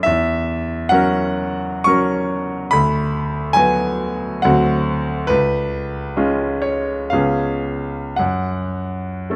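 Classical romantic character piece for solo piano, brooding and bittersweet, moving in 3/4 with a rubato feel at roughly 53 to 74 BPM. A bright grand piano carries everything alone, spanning C#2 to C#6 across this short passage cut from a longer work. Its tone is brilliant yet natural, captured by close, detailed microphones that place it up front, with light reverb lending a touch of space. The harmony moves from F#7/E through Bm/D and D7 before settling on C# at 5.3 seconds. The piano then falls away from chords at 8.2 seconds, and the passage ends at 9.4 seconds.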